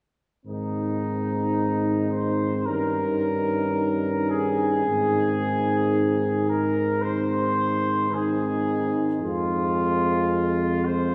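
A slow, freely breathing rubato in 4/4 shapes this hymn-like classical passage for brass band, cut from a longer piece, and its mood is lyrical and warm. A tight trumpet section carries the melody up front with a dark, roomy tone, while a loose, mellow French horn section sings a second line further in the background. A euphonium with light vibrato and a soft-attacked trombone fill in the accompaniment from a distance, both warm and roomy in the classical manner. Underneath, a clear tuba anchors the bass near the front, its notes also entering gently. The whole ensemble plays together from 0.5 s to 11.1 s over a simple progression of Ab, Eb7/G, Ab and Fm, heard from further back in a concert hall with a lush, lingering reverb.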